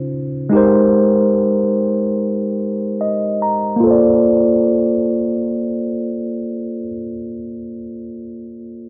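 Soaked in a long plate reverb and worn, warbling cassette tape with drifting pitch and a low-pass filter, this dreamy, nostalgic hip hop excerpt in Bb major moves at a swung 72 BPM in 4/4, where a clean, up-front tine electric piano, heard through its built-in speakers, plays accompaniment for the full 8.9 seconds, shifting from Abmaj9 to Bbmaj9 at 3.8 seconds, just as a filter sweep over the opening comes to an end.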